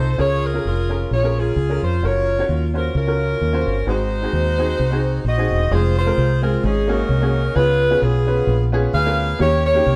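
Captured as a band playing live together in one room with a light touch of reverb, this uplifting, jubilant uptempo gospel piece swings along in 4/4. A tight, close-miked saxophone section carries the melody up front with a clear, jazz-style tone, light vibrato and soft attack, over a woody, smooth, vintage-sounding upright piano accompaniment. Underneath, a fingered electric bass sits forward in the mix with a direct, amped, foam-muted sound, all three parts playing throughout this short cut from a longer piece.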